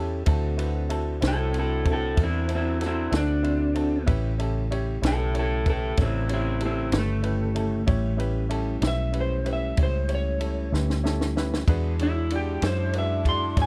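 Dark and close-sounding, this soulful, gritty slow blues in 12/8 features a slightly broken-up electric slide guitar, played with fingerpicks and sitting up front from 1.3 seconds, over a round, foam-muted electric bass, a compact cocktail drum kit with punchy kick, high-tuned snare and dusky ride cymbal that plays a fill at 10.7 seconds, a woody, slightly detuned upright piano, and a soft, flute-like tonewheel organ turning on slow rotary speaker in the background, while a tight saxophone section adds vibrato-laden chords from 11.7 seconds.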